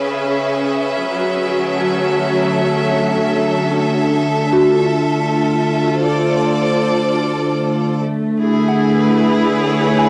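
A bright studio string section leads this short ambient excerpt, its bowed, vibrato-laden chords sitting close and up front with an intense ensemble sound. The piece moves at 69 BPM in 4/4 with a straight feel in D lydian, carrying a weightless, luminous mood. At 1.7 seconds an analog drone enters beneath the strings, a slowly blooming, detuned sawtooth and pulse-wave tone with ring modulation and chorus that evolves as it sustains. A soft synth bell joins at 4.5 seconds, tracing gentle FM arpeggios with a fast attack and long decay, its pure, mellow tone coloured by chorus, phaser and tape echo as it sits in the background. The harmony shifts through C#m7, F#m7 and Dm7 before settling on Amaj7 as a new section opens at 8.0 seconds. Captured as a home recording on cassette in a small, reverberant booth, the sound carries a gentle tape character across all three parts.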